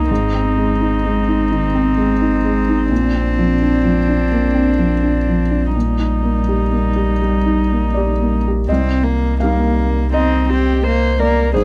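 A felt-muted upright piano accompanies this fragile, longing fragment of neoclassical chamber music, its boxy, short-sustained tone carrying audible action noise as it moves freely in rubato over a deep, clean sine sub bass that sits up front. A viola with light vibrato and a nasal, floating cello, each a single player bowing sul tasto with an airy touch, fill out the intimate texture as the harmony drifts from Ab through Bbadd9 and Eb/Bb before settling on Cm7 at 8.7 seconds. The dry, close, 1970s-style studio sound keeps every part near, and the passage is cut from a longer piece.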